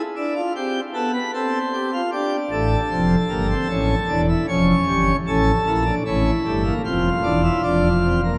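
At 0.2 seconds a pipe organ on full plenum enters alone, its mixtures giving a brilliant, up-front sound with a romantic voicing. This is a baroque-style four-part fugue in D minor, cut from a longer piece, moving in a steady 4/4 at 76 BPM with a straight, driving feel and a serious mood. The four voices span from a deep E1 up to C#5. The harmony opens on an E7 sonority, passes through A minor and D minor, then builds tension over A and A7 before settling back on D minor at 6.9 seconds. A cathedral reverb with a five-second decay surrounds the organ, and the production is dark and warm.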